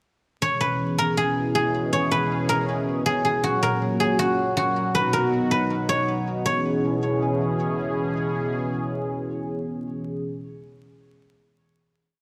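Hard-hitting and dark, this short half-time trap piece at 159 BPM in C# dorian pairs a silvery, fingerpicked guzheng looping a ringing delayed melody from 0.4 to 8.4 seconds with a bright, detuned sawtooth pad that holds chorused chords over a sub octave until 10.2 seconds, cycling through C#m7, F# and B before settling on a final C#m7 chord at 6.5 seconds, all set in a lush hall reverb with dark production and vinyl crackle.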